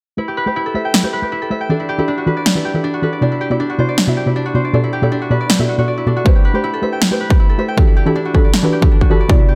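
This emotional, lush future bass excerpt in E minor at 158 BPM, felt in half-time, opens at 0.2 s with a soft, round, detuned synth pluck carrying the chords under a filter sweep, with chorus, tape echo and sidechain pumping. A ringing, fingerpicked concert harp plays arpeggios alongside it through a low-pass filter, with the same pumping and echo. A punchy, overdriven electronic snare sits up front from 0.9 s, and a layered electronic kick joins at 6.3 s, all over rich chords such as Am9, Em11 and Cmaj9#11 in a light reverb.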